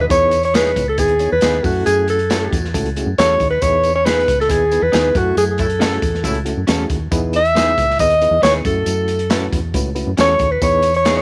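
A breathy, subtoned alto saxophone with light vibrato and scooped notes carries the melody up front in this danceable, uplifting uptempo 1960s-style soul excerpt at 137 BPM in E major, moving between Emaj7 and F#m7 over a gritty, saturated breakbeat drum kit, a punchy foam-muted fingered bass, a reedy electric piano with fast tremolo, slightly broken-up guitar stabs with lush chorus entering at 0.5 s, a mellow bell-like glockenspiel and a jingly tambourine in the background, while a tight, dark vintage horn section adds a brief second line from 5.6 to 6.4 s during a band accent, all in a small room ambience.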